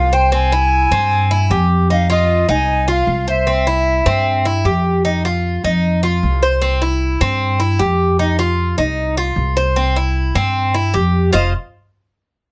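Lightly reverberant, this nostalgic Cuban son and guajira excerpt in F minor moves at 152 BPM as a reedy, airy concert flute with plate reverb sings a tongued melody until 4.8 s, while a bright, metallic Cuban tres picks double-string arpeggios and a woody, growly pizzicato upright bass holds the low end up front through 11.5 s over chords moving between C, Fm7 and F5.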